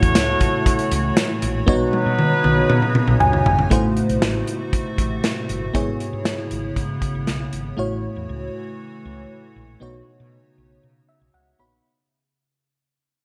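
This uplifting, romantic 1980s-style pop excerpt opens at 118 BPM in a straight 4/4, with a lush, dreamy FM electric piano layered over a soft pad, its chorused, fast-attack tones sitting up front alongside a glassy, ethereal FM pad that holds slow-blooming sustained chords through ensemble chorus and its own reverb. A warm horn section with light vibrato fires distant, roomy stabs through a digital delay, heard only until 3.4 seconds. Underneath, a woody fretless electric bass gives a round, punchy, hollow-body foundation, while a modern studio drum kit with a tight kick, medium-tuned snare, hi-hat, tambourine and toms plays dark and smooth under gated reverb, rolling through a fill before dropping out at 7.6 seconds. The harmony moves from F#m7 and Badd9 to Am6 and C#m7/G#, and the electric piano adds short fills, the last between 10.8 and 11.8 seconds. A fade-out begins at 3.7 seconds, and the bright digital production carries moderate plate reverb and a small room ambience.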